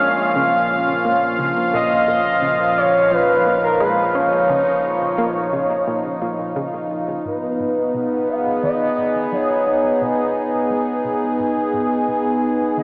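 From the first moment, a bright, up-front resonant pad, a smooth, vibrato-laced synth lead with lush chorus and tape echo, a tight, driving sequenced riff and a warbling analog drone bass in the background fill a vast, cathedral-like reverb in this mysterious, expansive sequencer-driven ambient space music at 87 BPM in G# dorian, all wrapped in a cassette and AM-radio haze, until the drone stops at 7.2 s and a filter sweep moves across the sequenced synth as the harmony shifts from A#m to G#m at 7.3 s.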